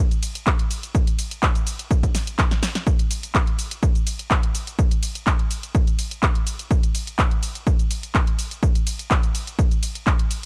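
A dry, gritty recording with transformer saturation carries this joyful, uplifting house excerpt at 125 BPM in a straight 4/4, where an up-front analog kick with a tape-warm, punchy thump, re-recorded in a small room, enters at 0.5 seconds beneath a layered electronic kit of handclaps, bright hats, ride cymbal, shaker and a punchy snare, with a drum fill from 2.1 to 2.9 seconds.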